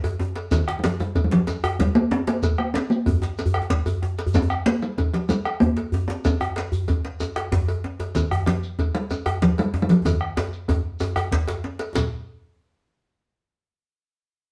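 A straight 12/8 groove drives this powerful, earthy West African drum ensemble, played live in one room with moderate reverb. A metallic cowbell and a deep, dry djembe open the piece, joined almost at once by a tight, cracking second djembe with metal rattles. From 0.5 seconds, an up-front talking drum carries the melody with a short ring over a round, band-limited bombo and a grainy, compressed shekere, and drum fills land at 3.9 and 10.1 seconds.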